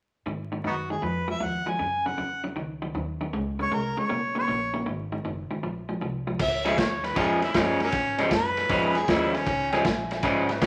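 A wet studio reverb and a bed of vinyl crackle frame this laid-back, soulful electric blues shuffle at 156 BPM in 4/4, with a lazy swing on the eighth notes and a cadence that moves through Ab5, Gb5, Db5 and Ab7 before settling on Db. Up front, an electric guitar through a small old amp plays a twangy, slightly broken-up, lo-fi riff, while a pizzicato upright bass with gut strings adds a woody, thumpy low end. A soloing harmonica carries the melody in a jazz style, full of vibrato, scooped notes and tongue slaps. At 6.4 s the music shifts into Db mixolydian as a gritty, saturated drum kit enters up front with a punchy kick, dark cymbals and a rolled-off top. At 9.7 s a brilliant upright piano adds a second line in the background as the excerpt is cut from a longer piece.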